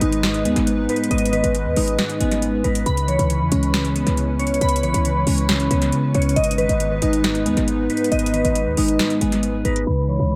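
Melancholic and eerie, this short excerpt from a longer trap hip hop piece moves at 137 BPM in a half-time feel over G#m and C#m7, with glassy, up-front digital keys arpeggiating through chorus and analog delay, a dark, clean electric guitar accompanying through its own delay, a hollow, flute-like pad holding sustained chords in the background, a punchy, tight 808-style bass, and a booming, overdriven analog drum machine with a crisp snare and metallic hats that stops at 9.9 seconds, all set in a dim, echo-heavy mix with light digital reverb.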